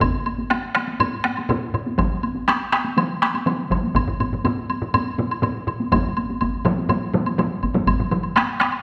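Three taiko ensembles, struck with heavy and hard sticks, open together with a woody, close and dry woodblock in a driving, ceremonial Japanese traditional taiko passage in straight 4/4, cut from a longer piece: one drum group sits compressed and saturated up front, a fourth taiko ensemble joins at 2.0 s, and the sound rings in a recital hall reverb.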